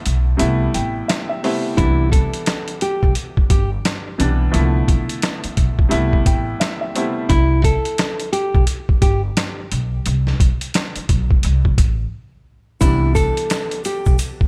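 A vintage grand piano, filtered and given a cassette-tape coloring, opens this soulful boom-bap hip-hop excerpt with intimate, short-sustained chords where the action noise of the keys is audible. Almost at once a gritty, pitched-down sampler-style drum kit settles in up front with a thumpy kick, medium-tuned snare and hi-hat, swung on the sixteenths and carrying the compressed character of a large room. A woody pizzicato upright bass on steel strings holds the low end beneath it. At 1.8 seconds a bright, fingerpicked nylon-string guitar takes the melody up front, filtered and touched with digital delay, moving over chords such as Cmaj7, Dm13/B and Am7. The piano stops at 7.3 seconds and returns at 12.8 seconds alongside a grainy, mellow tube shaker that sits distant in the background. The overall sound is dry and close, with a warm, unhurried groove.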